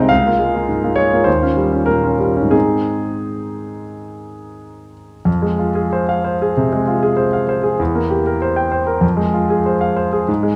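A romantic classical character piece for solo piano, this short cut from a longer work feels lyrical and hopeful, moving in 4/4 with a flexible rubato that ranges between 86 and 107 BPM. A concert grand plays alone throughout, spanning C2 to G5 with a warm, smooth tone, deep bass and a vintage color, sitting up front. The opening passage moves through Bbm7/Db, a rootless Eb9 and Ab before the music arrives in F minor at 5.3 seconds. The second passage then travels from Fm through C7/E and returns to Fm. A wet recital hall reverb with a 1.7-second decay surrounds the piano and lends it a sense of space.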